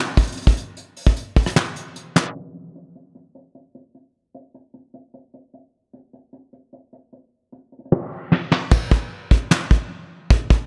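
Dark and menacing, this short hip hop cut from a longer piece moves with a half-time feel in 4/4. A soft brush drum kit carries it alone, entering at 0.2 seconds with an acoustic, studio-room sound: a fat snare, a tight kick, dark cymbals and brushes sit up front, joined by rim clicks, handclaps, hi-hat and a crash cymbal. From 2.4 seconds a filter sweep runs through the middle stretch. At 8.7 seconds the hi-hats drop out, leaving the remaining kit pieces to close the final section. A light reverb and a low-pass filter give the whole mix a muffled, shadowy cast.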